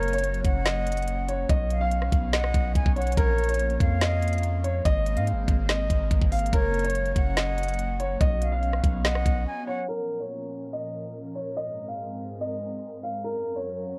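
Trap-flavoured hip hop in Bb minor at 143 BPM with a half-time feel, this brooding, melancholic clip is cut from a longer piece. A dark, boxy concert grand piano carries the melody up front over the full 14 seconds, its long sustain ringing over an airy, detuned pad that holds chords through chorus and phaser. A breathy, close-miked flute with a straight tone adds a second line with delay until 9.9 seconds. Underneath, a deep, sine-like 808-style bass with a fast attack and mellow decay sits forward alongside a produced trap kit of knocking kick, woody snare, rim click, handclaps and crisp hats. Bass and drums drop out for a brief break around 9.5 seconds, leaving piano and pad to carry the closing stretch as the chords cycle from Gb through Bsus2, Bbm and Abadd9. Warbling cassette-tape pitch drift, a low-pass filter and digital ambience give the whole a worn finish.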